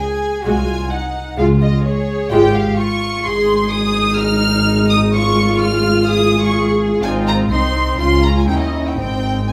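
A warm violin section carries the melody from the opening moment, with a darker, lush second violin line tucked in the background and a dark cello section holding the bass, in this restless, dramatic excerpt from a quick classical-period movement for string orchestra with a rubato feel. The viola section joins at 0.4 s with smooth, sul tasto accompaniment, and the double bass section enters at 0.5 s, pure and floating, sitting up front beneath the ensemble. All five sections are bowed sul tasto with an intimate, close sound, and a wet stone room reverb lends the brief passage a resonant depth.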